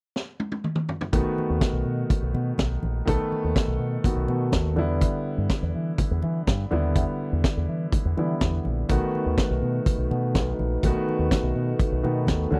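A gritty, saturated vintage drum kit with a high-tuned snare and tight kick opens this sultry, driving disco track with a fill. At 1.1 seconds a fingered electric bass through an envelope filter, a clear concert grand piano with deep lows, and very quiet, damped congas join over B7 and Em7 chords, and at 8.9 seconds a dark, distant French horn section enters in the background with sustained chords. The sound is a dry, close 1970s-style studio recording, cut from a longer piece.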